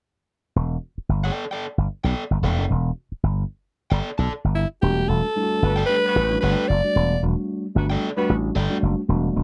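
Funk with a hypnotic, cool mood and a swung sixteenth-note feel, built over an Em11 chord. A growly, punchy slap bass with an envelope filter sits up front from 0.6 seconds, joined by a crunchy, bright overdriven guitar playing picked accompaniment up high, before a raspy, gritty alto saxophone takes the close-miked melody at 4.6 seconds. Mellow tine electric piano stabs with slapback echo and a tight horn section carrying a smooth-topped second line in octave doubling fill out the second half of this dry, close 1970s-style studio recording.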